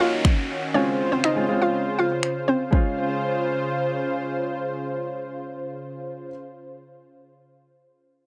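A hollow, bouncy square-wave pluck carries the melody in this short dance-pop excerpt, its detuned tone thickened by chorus, tape echo and sidechain pumping. Beneath it, a lush, nasal sawtooth pad holds sustained chords up front with chorus and pumping of its own, while a baby grand piano adds intimate accompaniment with audible action noise, a short sustain and the same pumping. A deep house drum kit of finger snaps and a deep kick enters at 0.2 seconds and stops at 2.8, as an electronic downlifter sounds through the opening 2.7 seconds. At 121 BPM in Db major, the harmony moves from Ebm7 to Dbmaj7, giving the music a summery, carefree feel. Light reverb and a dry, close 1970s-style studio sound keep the whole thing snug and immediate.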